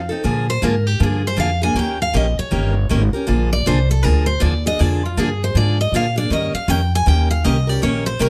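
Charming and swinging, this short cut from a longer jazz manouche piece moves at 158 BPM in 4/4 with a 63% swing on the eighth notes, centred on Bb mixolydian. A picked steel-string acoustic guitar with a bright, full-bodied dreadnought sound and fresh strings carries the melody as a solo from 0.2 seconds, moving between F4 and Ab5. Beneath it, a second picked steel-string guitar, boxy in the manner of a parlour instrument, supplies accompaniment from 0.1 seconds. An upright bass played pizzicato gives a woody, thumpy low end on gut strings and sits a little louder than the guitars. The harmony shifts between Bb7 and Eb7, and light reverb gives the up-front trio a touch of room.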